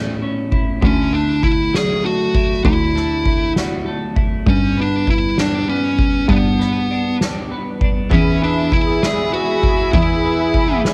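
Tender and romantic, this short cut from a six-eight pop ballad has a dry, intimate home-cassette sound, opening with a bright, twangy double-tracked twelve-string electric guitar over a veiled, muted cello bowed with vibrato. A soft-mallet drum kit with a boomy kick, dark cymbals and snare comes in almost at once, and from 0.8 seconds a dark, fuzz-distorted lead guitar carries the melody up front through analog delay. At 8.1 seconds a smooth, detuned sawtooth pad with chorus and a very quiet, direct-recorded clean electric guitar playing arpeggios join as the harmony arrives on E.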